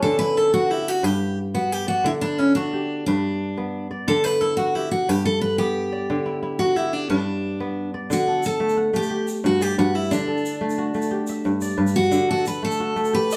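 Joyful and flowing, this short cut from a longer West African traditional piece sets a steel-string acoustic guitar and a kora together over a rolling 12/8 pulse at 119 BPM in dotted quarters, in D major. The picked guitar carries the melody between C#4 and D5 with a bright, full-bodied dreadnought tone, up front in the mix, and a touch of finger squeak gives it a human edge. Beside it, the fingerpicked kora spins ringing, crisp arpeggios across a broad span from G2 to F#5, also sitting up front. The harmony simply rocks between D and G about once a second, keeping the mood buoyant and unhurried. At 8.1 seconds the second section begins and a grainy egg shaker enters far back, sounding distant as if across a large room. The band plays live together in one room, and a wet studio reverb lends the whole a gentle bloom.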